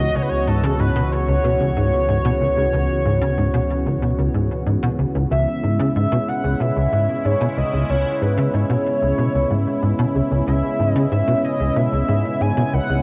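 From the first moment, a punchy, driving sequencer bass riff sits up front under a shimmering, warbling pulse-width lead melody and a sweeping, airy resonant pad holding sustained chords, all opening on a C#m7 chord. This mysterious, expansive slice of ambient space music, cut from a longer piece, moves in a straight 4/4 feel. The bass is the most prominent voice, its sawtooth and square-wave tones colored by ring modulation, a plucked filter and a cassette-tape grit, with ensemble chorus and delay adding depth. A nasal, mellow analog drone hums beneath on a single low note, its slow attack softened further by chorus, before dropping out at 5.3 s, leaving the lead, pad and bass to carry the rest through 13.0 s. The detuned, evolving pad with its noise layer and the retro, vibrato-laced lead, touched with chorus and delay, float inside a lush plate reverb that gives the whole passage a spacious, glistening air.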